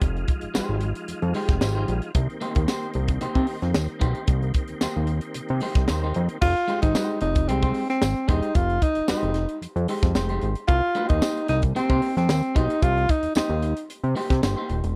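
A sly, cool funk groove opens on smooth tonewheel organ chords swirling through a fast rotary speaker over a fat, saturated analog bass and a crisp fusion kit with a punchy kick and high-tuned snare, joined at 0.5 seconds by slightly broken-up electric guitar in spring reverb and jingly tambourine, before the organ drops out at 6.4 seconds and a breathy, dark tenor saxophone takes the melody up front in a dry, close 1970s-style room.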